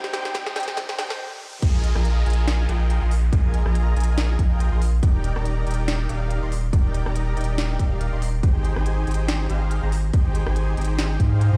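Swung, half-time 4/4 future bass with a lush, euphoric mood opens on a short build-up in which a gritty, detuned unison pluck with tape echo and a filter sweep, a soft felt-muted upright piano with audible action noise, a dark and very quiet chamber string section, a background riser and downlifter, a trap drum fill, a deep, saturated sub bass up front and a huge, thick supersaw riff with cassette-tape colour sound together, the bass and supersaw both pumping from the sidechain. A hard-clipped electronic kick joins at 0.3 s, and a stop at 1.2 s gives way at 1.6 s to the drop, where the kick and a trap kit with a sharp snare and crisp hats drive the sub bass and supersaw onward in a big, bare-room sound.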